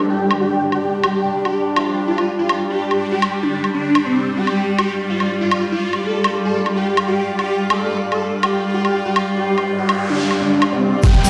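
Drenched in a lush hall reverb and heard through a big sound system in a bare stone room, this alien, intense psychedelic trance excerpt opens on a cloudy, blurred granular pad, a bubbling, resonant stepped-filter texture holding chords, and a swarming, aggressive rave lead with detuned unison, portamento, phaser and dub echo, all pumping against the beat alongside overdriven electronic woodblock and hi-hat. A downlifter starts things off, and a noise sweep sounds from 9.6 seconds. At 11.0 seconds a knocking, up-front kick, a squelchy, gritty acid bass riff and a grainy egg shaker burst in, followed a moment later by a tight, punchy sequencer bass just as the clip ends.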